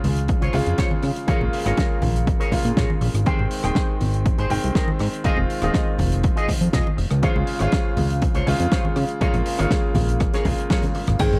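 A straight, steady groove drives this sunny, feel-good nu-disco clip, with a punchy, overdriven electronic kick up front over a dry, damped 70s drum kit with dark cymbals, while very quiet congas and tambourine add close, ringing color. A fat, sawtooth-edged analog bass with a filter sweep anchors the major-seventh and minor-seventh chord changes, a bright grand piano with audible action noise pumps under sidechain and analog delay, and a clean, scooped envelope-filter guitar riff with chorus enters at 0.3 seconds. A drum fill and band accent at 10.7 seconds lead to an impact at 11.2 seconds, where a metallic hard-mallet vibraphone note and a faint sub drop arrive, all within a gritty, small-room hardware sound.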